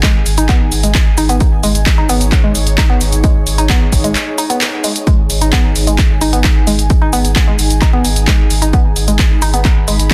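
Hypnotic and relentless, this driving peak-time techno excerpt runs at 131 BPM in a straight 4/4 and sits in G# minor. An overdriven, layered electronic kick drum leads the mix, joined by a punchy analog drum machine whose handclaps, hi-hat and shaker carry overdrive and a roomy, re-recorded character, with sidechain pumping on the hats and percussion. Beneath them, a thick, saturated sub bass holds a sustained G#1 through a low-pass filter and tube saturation, breathing with sidechain pumping. The riff comes from a woody, wave-folded pluck between G#3 and D#4, its short, percussive notes colored by chorus, tube saturation, tape echo and sidechain pumping, and it stops at 9.9 seconds. An airy, breathy pad with chorus and sidechain pumping hangs softly between D#4 and B5, while a break arrives from 4.2 to 5.1 seconds. Light digital reverb surrounds the dense, heavily limited master.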